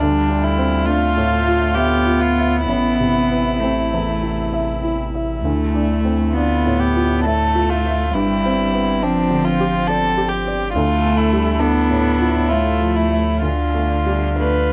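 A close, homey cassette sound in a small booth frames this short neoclassical passage for piano and strings, cut from a longer piece, its longing, melancholic mood carried in an uneven three-beat metre pulled about by rubato. Up front, a single violin sings the melody with an airy, floating bow and soft attack, while one cello plays a second line beneath it, intimate and touched with light vibrato. A dark, smooth viola sits in the background with floating accompaniment, and a felt-muted upright piano adds mellow, thin-felted accompaniment that spans from deep bass to the upper middle register. Under them all, a round sine sub bass holds the low end, deep and sustained. The harmony circles back to D minor shades throughout, passing through A minor and a suspended G seventh before settling on a plain D minor at 13.4 seconds.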